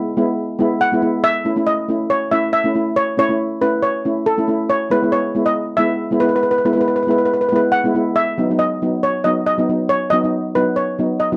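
A dry, close studio sound in a 1970s style, touched with light reverb, frames this short cut from a longer calypso piece. Two steel pan parts sit up front for the full 11.4 seconds, carrying a carefree, bouncy mood at 138 BPM in a straight 4/4 and the key of E major, tuned slightly high at A4 = 441 Hz. The lead pan, struck with medium rubber sticks, carries the melody between A4 and F#5 with a metallic, shimmering ring. Beneath it, the cello pans play the accompaniment from F#3 to E4 with soft rubber sticks, giving a mellow, soft tone that sounds boxy, as if heard in a small room. The harmony moves from E to A, returns to E and turns to B near the end of the passage.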